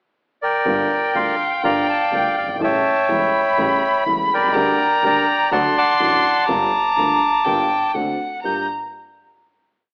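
A dramatic, passionate tango in G minor at 124 BPM with a rubato feel, opening on a brief pickup in which the reedy, bright bandoneon takes the lead up front at 0.4 s with a motif-based melody in period phrases. A warm bowed violin adds an expressive counter-melody with vibrato, soft attack and portamento, while a woody upright piano and a rich bowed double bass in the background both play a marcato tango rhythm in four through chords such as Gm7, A7 and D7. Moderate large studio reverb and an AM radio sound frame the whole piece, which settles on a final Gm7 chord at 8.4 s.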